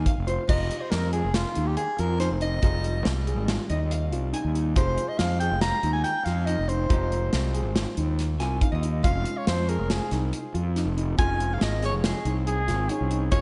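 A dreamy, reverb-soaked hall sound surrounds this driving, tense progressive instrumental, cut from a longer piece in F minor at 140 BPM in a straight 5/4. A warm soprano saxophone with light vibrato carries the melody through a delay, while a fuzzy, overdriven fingered bass and an up-front acoustic kit with bright cymbals and a tight kick push underneath. A dark, mellow baby grand plays arpeggios, a clean, compressed archtop guitar sits in the background adding hollow-body fills, and a brilliant trombone steps forward with a short second line at 12.5 seconds over the Db/F chord that follows the earlier move from Fm7.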